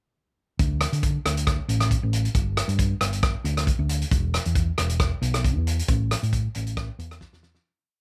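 A swung calypso groove at 136 BPM in 4/4 drives this festive, carefree piece in a dry mix. A loose indie drum kit with a fat snare, punchy kick, rim clicks, hi-hat and a rolled-off top sits up front beside a dark, round, amped hollow-body short-scale electric bass playing a syncopated figure, before a fade-out from 5.9 seconds and a closing drum fill at 7.2 seconds.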